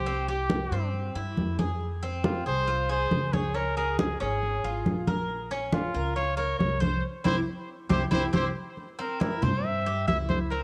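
This home recording on cassette has a hazy, small-room sound with a touch of light reverb, and it is cut from a longer piece of Cuban son and guajira. The feel is sultry and danceable at a straight 138 BPM in 4/4, moving through C, Fm, Db and Bbm before returning to C. Up front, a close-miked solo trumpet carries the melody with light vibrato and a pop-style tone, its line softened by tape echo. A picked Cuban tres spins metallic arpeggios on its double strings, some of them octave-doubled, while a woody, thumpy upright bass played pizzicato on gut strings anchors the low end. Congas with a thick skin and medium tuning, struck with soft hands, give the groove a live, earthy pulse. The whole band hits an accent at 7.0 seconds, a drum fill follows at 8.3 seconds, and a new section begins at 8.8 seconds.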